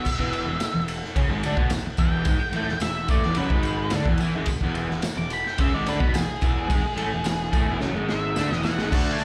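An octave-fuzz lead guitar solos darkly through slapback echo across this raw, swaggering garage rock excerpt in E major at 108 BPM, riding a double-tracked crunchy overdriven guitar riff, a growly fuzz-picked bass, a boomy, gritty up-front drum kit with dark cymbals that drops in a fill from 7.8 to 8.9 seconds, and a jingly tambourine in the background, all heard like a live gig through a club PA.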